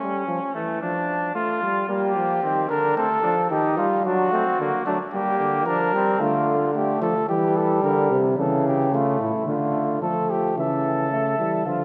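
Solemn and contemplative, this imitative brass canzona in classical style opens with a vintage-toned flugelhorn second line over a present, clear trombone accompaniment, as a dark, smooth-topped trumpet with light vibrato takes the melody at 1.9 seconds, a distant, roomy bass trombone adds the bass from 6.2 seconds, and the flugelhorn returns at 10.6 seconds, all set in a wet church reverb.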